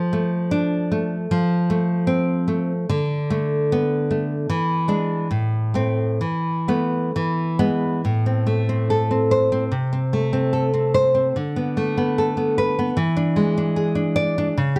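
The rhythm moves in a flexible two-beat metre, stretched and pulled by a rubato feel that lends this romantic solo classical guitar piece a wistful, passionate mood. A single nylon-string guitar carries everything, fingerpicked and placed up front, with a full-bodied, warm tone spanning from its low bass strings up into the upper register. The opening phrase moves through a dark, searching harmony that settles on a suspended chord before resolving, and a second phrase begins at 8.0 seconds, returning to the minor home chord and building back toward a tense dominant seventh. Close, detailed microphones capture the intimacy of the playing, set in a light reverb. The passage ends at 14.8 seconds, cut from a longer piece, still hanging on that unresolved dominant harmony.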